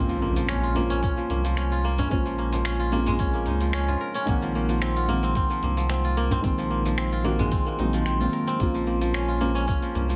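A swung 4/4 groove at 111 BPM sets a hypnotic, meditative pace for this organic downtempo excerpt in Bb minor, which drifts from Bbm9 to Ab9/Bb and back. A deep house kit of cabasa, finger snaps and metallic hi-hats begins at 0.1 seconds, a very quiet djembe with metal rattles adds an acoustic, small-room texture from 0.8 seconds, and a deep electronic kick arrives at 1.0 seconds. A round sine sub bass with a fast attack sustains low notes under a sidechain pump. Up front, a crisp, fingerpicked kora rings out arpeggios through a digital delay. Beneath it, a felt-muted upright piano plays dark, intimate chords with audible action noise, pumping with the sidechain and echoed by its own delay. A faint electronic impact marks the opening two seconds, and light reverb with small room ambience frames the mix.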